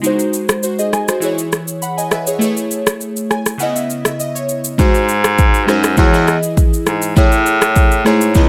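A straight 4/4 afrobeats groove at 101 BPM opens this sultry, smooth passage, carried by an electronic, produced afro-pop kit whose deep, overdriven kick sits up front with rim clicks and shaker. Glassy digital keys supply the accompaniment throughout, a bright, airy, sine-based tone with a noise layer, fast attack and decaying notes, treated with chorus and shaped by a low-pass filter sweep. The keys step forward with a fill from 3.0 seconds, moving through harmony that includes G#7, E6, Amaj7 and C#m9. At 4.8 seconds a warm baritone saxophone enters as the bass voice, punchy and vintage in character with light vibrato, played in a pop style and placed up front. Light reverb gives the short cut, taken from a longer piece, a gentle sense of space as the chords return to G#7, E and Amaj7.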